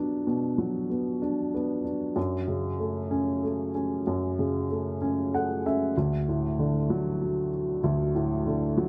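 A gently swaying 6/8 lilt carries this heartfelt pop fragment, played by a lone upright piano with a dark, woody, vintage tone that sits up front in a light reverb, touched by digital delay. The harmony moves from Bm to F#m before a short piano fill at 5.0 s leads into a new section at 5.9 s that settles on D.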